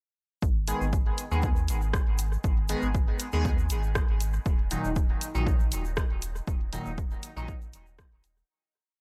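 A deep, round sine sub bass with tube saturation and sidechain pumping enters at 0.4 seconds with a dotted rhythm, alongside an up-front, tape-warm four-on-the-floor electronic kick and a grainy egg shaker playing hand-played sixteenths in the background, before a juicy, wave-folded polysynth throws sparse, resonant chord stabs, moved in parallel through chorus, phaser and dub echo, as programmed closed hats and rim clicks from a punchy analog drum machine join in, in this nocturnal, hypnotic 119 BPM dub techno piece in G# minor that shifts from G#m to D#m and fades out from 5.8 seconds in a dry, gritty hardware recording with digital ambience.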